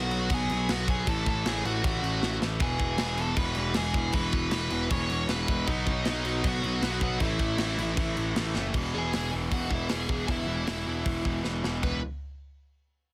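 Punk rock at 156 BPM in E major, energetic and rebellious, this cut from a longer piece puts a dark, smooth overdriven lead guitar melody up front over a growly fuzz picked bass and a tight metal drum kit with a tight kick and rolled-off top. A bright distorted electric guitar riff sits in the background, and a very quiet double-tracked, compressed guitar riff plays until it stops at 8.7 s. A cranked stack guitar riff joins at 2.6 s, and several drum fills punctuate a dense, dry, heavily limited mix.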